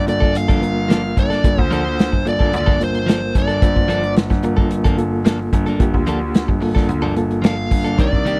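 Straight-eighth soul blues in 4/4, this brooding, smoky passage is cut from a longer piece and rests on a single Gm9 chord. A smooth, overdriven lead guitar carries the picked melody in a high register, playing until 4.1 seconds and returning at 7.5 seconds. Beneath it, a reedy electric piano sounds through its built-in speakers with a fast tremolo, while a clean, direct-recorded electric guitar adds compressed, picked stabs. A concert grand piano holds down the bass in its deep low register, natural and up front. A small-room soul drum kit of hi-hat, kick and snare sits loudest in the mix, with a punchy kick, a medium-tuned snare and a dark, rolled-off top. The whole has the dry, close feel of a 1970s-style studio recording with little reverb.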